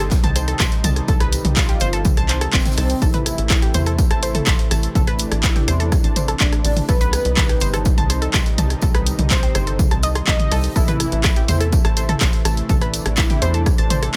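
Set in a small room ambience, this dark, hypnotic melodic techno excerpt in A minor at 124 BPM pairs an up-front, punchy electronic kick and a tape-warm analog drum machine of handclaps, hi-hat, rim click and toms with a gated 80s kit of hi-hat, snare and tambourine in the background, beneath a tight sawtooth sequencer bass, a detuned unison pluck playing arpeggios through digital delay, and a warbling, vintage unison pad holding sustained chords over Cm and Am, with most parts pumping to the sidechain, while a fat, detuned analog lead with a sub octave and ensemble chorus carries the melody from 1.6 seconds.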